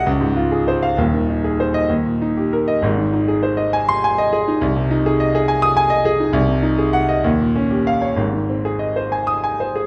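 Classical virtuoso piano study in A-flat major, heroic and sparkling, moving in a rubato 6/8 at around 63-70 BPM by the dotted quarter. A clear, smooth grand piano with a vintage tone and short sustain plays solo and up front across a broad span from Eb1 to Eb6, moving from a Dbmaj7 opening through Ab and Eb harmonies to an Ab7/C and Eb9 before settling on Ab at 8.2 seconds. The piano sits in a wet recital-hall reverb, in this brief passage cut from a longer piece.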